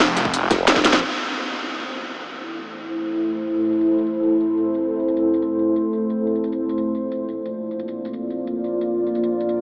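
A snarling, distorted saw bass growls up front through the opening second of this dark, aggressive technical drum and bass cut at 177 BPM in A phrygian, joined briefly by a chorused formant-sweep wobble bass, a tight electronic kick, and a very quiet, gritty breakbeat kit with dark cymbals, before a drum fill at 0.8 seconds and a band accent at 0.9 seconds. From there a layered drum and bass kit with a cracking snare, crisp filtered hats and tambourine carries on, and at 2.5 seconds a deep, moody ambient pad with a slow attack and sidechain pumping rises to hold sustained chords moving from A minor to B-flat. The mix is dreamy and soaked in huge reverb, yet it keeps a small-speaker sound.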